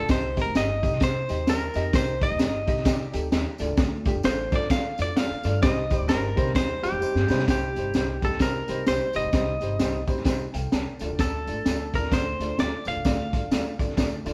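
Cassette tape and a moderate stone-room reverb frame a band playing live together on this driving, passionate slice of uptempo 1960s-style soul at 130 BPM, swung in C dorian as it moves between Cm and Dm. A twangy, compressed clean electric guitar sits up front, soloing from the start until 7.5 seconds, backed by a thumpy pizzicato upright bass, a dark, slightly detuned upright piano, and a jingly tambourine tucked in the background. The saturated breakbeat kit, with its punchy kick, high-tuned snare and 12-bit sampler grit, drives everything forward with a fill at 7.0 seconds, and the piano adds a fill of its own at 9.8 seconds.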